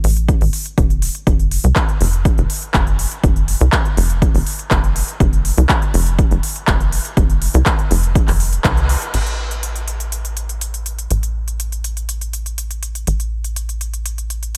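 Expansive and driving, this progressive house excerpt moves at 122 BPM in a straight 4/4. It rests on a tight sequencer bass with a punchy sawtooth-and-square tone, wave-folded and saturated, pumping with sidechain between E1 and C2, while an up-front, overdriven electronic kick and a big-room dance kit of crisp hi-hats, handclaps and crash cymbal share a touch of studio reverb in an otherwise fairly dry mix. The band hits an accent at 8.6 seconds, the kick stops at 8.7 seconds, and a new section begins at 9.1 seconds.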